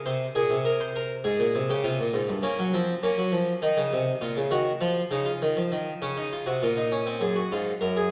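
A solo Flemish-style harpsichord, plucked and full-bodied on two sets of strings, opens this solemn, contemplative baroque-style two-part invention in Bb minor at 101 BPM in a straight 4/4, tuned to A4 = 438 Hz, ranging from Gb2 to C5 and moving through chords such as Abadd9/Bb, Fm/Ab, Cm7b5 and Dbadd9 before settling on Gb at 7.2 seconds, with the instrument close in the mix yet heard from further back in a recital hall whose reverb lingers, in a brief cut from a longer piece that ends at 8.1 seconds.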